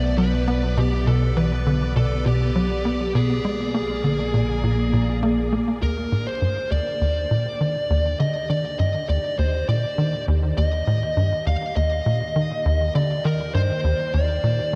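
A punchy, nasal sequencer bass riff drives this luminous, cosmic piece of ambient space music at 101 BPM in 4/4, its plucky sawtooth tones sitting up front with chorus and tape echo, while a fuzzy, compressed lead guitar carries the melody through its own tape echo. A swirling, bright string machine with phaser and ensemble chorus sustains chords from the start, and a mellow, warbling analog drone underpins the opening over Bm and Bb7 chords until it stops at 5.8 seconds. There the music settles into Eb major on Ebmaj7, and the string machine fades up through 14.8 seconds. The dark, warm production is bathed in a huge reverb with an 8.2-second tail, and the passage is cut from a longer piece.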